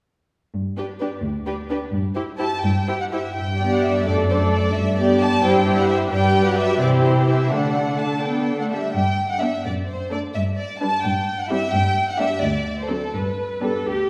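Spirited and lively, this short cut from a longer classical-period movement for string orchestra moves quickly in a straight 6/8 at 86 BPM, in G major and tuned slightly below standard pitch at A4 = 436 Hz. Cellos anchor the bass from 0.5 seconds with an up-front, bowed vibrato tone, joined at 0.8 seconds by the first violins carrying the melody between A4 and A5, a lush second violin line, and violas filling the inner accompaniment. The harmony circles G, C and D chords, closing on a D7 before returning to G at 13.1 seconds, all set in a reverberant scoring stage that places the ensemble further back in the room.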